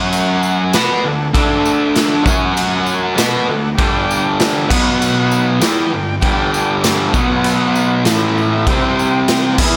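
A straight 4/4 pulse at 98 BPM drives this raw, swaggering garage rock excerpt in D major, where an up-front, double-tracked fuzz guitar riff carries the weight over a punchy, gritty kit with a medium-tuned snare and crash cymbal in a pumping stone room, while a buzzy vintage combo organ with heavy vibrato holds sustained chords in the background, breaks into a fill from 7.4 to 8.7 seconds, and a jingly tambourine sits far back in the light small-room ambience.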